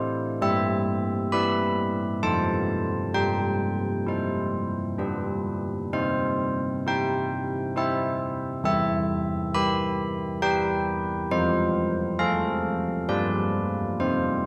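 Uneven beats sway in a triple metre through this festive yet serene classical tune for church bells, taken from a longer piece. A solo carillon carries it all from 0.0 to 14.5 seconds, its bronze tone ringing bright and full with a minor-third overtone and the knock of a worn iron clapper, close-miked and up front. Around the bells, a concert hall adds a wet reverb.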